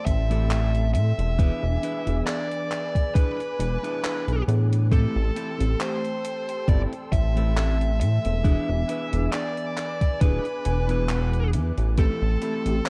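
Nostalgic and woozy, this slow 68 BPM vaporwave excerpt in A dorian sets a bluesy overdriven lead guitar, distorted and tape-echoed, over a lush FM electric piano with a soft pad layer and tremolo, veiled muted strings and a dark clean electric guitar riff in the background that breaks into a fill at 10.2 seconds, all grounded by a glossy chorused synth bass, a thumpy up-front electronic kick and a gated 80s drum machine's handclaps and hi-hat, swinging gently between Am7 and E7 in a dark, close production.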